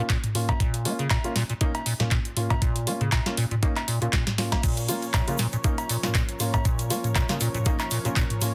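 Dry, densely limited sound frames this driving, raw acid house excerpt at 119 BPM in Bb minor with a swung 16th feel: a squelchy, resonant square-wave acid bass riff with tube saturation and a filter sweep runs beside dark, mellow grand piano stabs touched by digital delay, while a thumpy, tape-tinged electronic kick and a booming analog drum machine of metallic hats, tonal snare, handclaps, cowbell, toms and crash sit up front, and after a drum fill at 4.1 seconds a lush, detuned unison pad pumping with sidechain and a grainy tube shaker tucked in the background join at 4.6 seconds.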